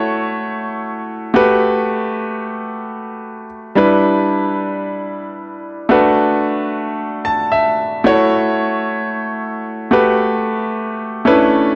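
A clear, polished concert grand piano plays alone and up front in this bouncy, slick R&B passage cut from a longer piece, its deep bass and short sustain riding a swung sixteenth-note feel through F#m7, Gmaj9, Em7 and Bm7 chords, with a brief fill at 7.0 seconds and a lush hall reverb around it.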